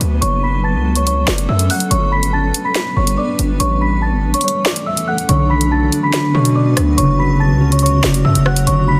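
A distorted 808-style bass sits up front, heavy and saturated, its sine core roughened by a noise layer and a fast attack that quickly decays. This ominous, tense drill cut from a longer piece moves at 142 BPM in 4/4 with a half-time feel in B minor, while a bell-like celesta carries a delicate, mellow melody with delay, sweet but shaded dark by soft felt hammers. Beneath them, a granular cloud pad holds blurred, evolving chords with a slow attack and long release, and an electronic drill kit adds a sharp snare, rim clicks and warm hi-hats. The kick drops out from 4.4 to 5.3 s, just before a thumb-plucked concert harp enters at 5.3 s with ringing acoustic accompaniment. The harmony moves from F#m through G and A to Bm before returning to F#m, all within a dense, heavily limited modern master.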